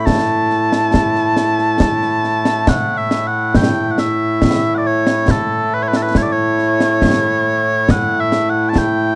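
A slow, straight 3/4 pulse at 69 BPM, set by concert snare and bass drum with bright cymbals in a small-room acoustic sound, carries this ceremonial, proud piece of Scottish traditional pipe music in A mixolydian. Mellow small bagpipes play the melody solo and up front, sweet and continuous with vibrato, ranging from A2 to A5. The dry, close 1970s-style studio sound keeps this short cut from a longer piece intimate, with the tune moving into a new section at 2.7 seconds.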